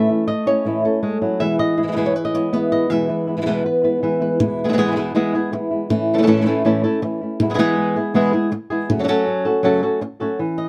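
A fingerpicked flamenco guitar carries the melody up front, its dark acoustic tone marked by audible finger squeak, while a second thumb-plucked flamenco guitar, equally dark and close, punctuates with stabs. This festive, fiery flamenco moves at 160 BPM in a straight 4/4 in E major, cycling between A and E chords before reaching F#m near 8.9 seconds. Cut from a longer piece, the recording is dry and detailed, with both guitars heard throughout the roughly 10-second span.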